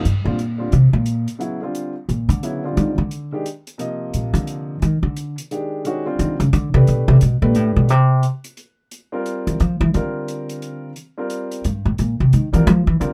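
A thumpy, up-front upright bass carries a pizzicato solo through this searching, open modal jazz waltz, its steel strings giving a woody punch to the swung triple feel. A clear, intimate upright piano accompanies with long sustain and audible action noise, while a dark, smooth hi-hat sits far back; the harmony opens onto a suspended colour at 7.9 s. The sound is dry, with the rough character of a home demo, and the passage is cut from a longer piece.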